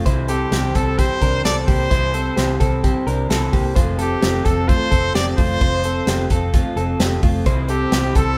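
Two electric guitars open this bright, youthful slice of jangly indie pop at 130 BPM in F major: a twangy, slightly broken-up, lo-fi guitar through a small old amp plays accompaniment in the background, while a clean, compressed, direct-recorded guitar picks arpeggios in spring reverb. From 0.1 s a dark, round, foam-muted fingered bass and an airy, polished studio kit with a high-tuned snare and punchy kick join, and at 0.3 s a forceful trumpet takes the solo melody up front with pop-style vibrato. The band sounds as if it is playing live together in a stone room, with the harmony moving from C to F and back to C before the cut.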